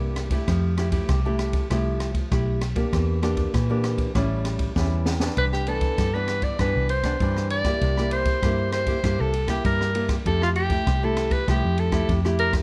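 A fingerpicked nylon-string guitar and a round, foam-muted vintage electric bass open this sunny, lively samba-choro excerpt, joined almost at once by an open jazz drum kit with dark cymbals, a high-tuned snare and a boomy kick, set up front in a natural studio room. After a drum fill from 4.8 to 5.4 seconds, a clear, punchy soprano saxophone takes the solo melody in jazz style, forceful and up front with scooped notes and light vibrato. The harmony moves through rich chords such as Fmaj9, Em7b5 and Cmaj9 under light reverb.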